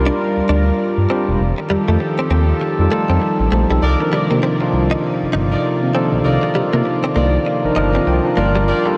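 Swung sixteenths in 4/4 drive this punchy, confident R&B excerpt, where a smooth, mellow synth bass sits up front beneath a clean tine electric piano and a shimmering, retro pulse-width pad with slow attack and long release. A direct-recorded clean electric guitar plays a compressed, picked riff bathed in lush chorus, and from 3.8 seconds a tight, jazz-style horn section adds warm stabs trailed by delay. The electric piano slips in a fill at 7.5 seconds over chords moving from Gm7 through F9 and Cm11, all within a dreamy mix soaked in huge ambient reverb.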